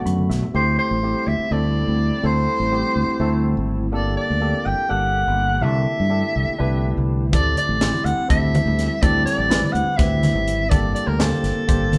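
A barky tine electric piano fill and a short drum fill open this bright, funky electric jazz fusion excerpt in 7/8 at 248 BPM (eighths). A vibrato-rich soprano saxophone sings the melody up front over clean electric piano chords, a growly fingered electric bass and a glassy, ethereal FM pad that enters at 1.2 seconds. The crisp drum kit, with its punchy kick and high-tuned snare, returns at 7.3 seconds alongside very quiet, low-tuned congas, the band playing together in a moderately reverberant room.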